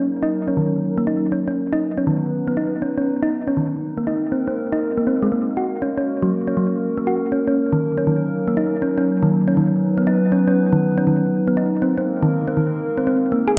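IDM at 120 BPM in 4/4, this 13.6-second excerpt carries a wistful, intricate mood, its sixteenths pushed into a lazy swing. A warbly, tape-like pad holds sustained chords from start to finish, its square and triangle tones rising slowly and fading long, with chorus, its own reverb and a gritty vintage 12-bit sampler texture giving it a nostalgic, lo-fi darkness. Alongside it, a round, tine-like thumb-piano pluck built from FM with a layer of noise spins gentle arpeggios that strike quickly and decay, colored by chorus and tape echo. Both parts sit up front and move through a filter sweep across the whole passage. The harmony cycles through D#m7, Badd9, G#add9 and F#add9, and a plate reverb soaks the mix in a dreamy haze.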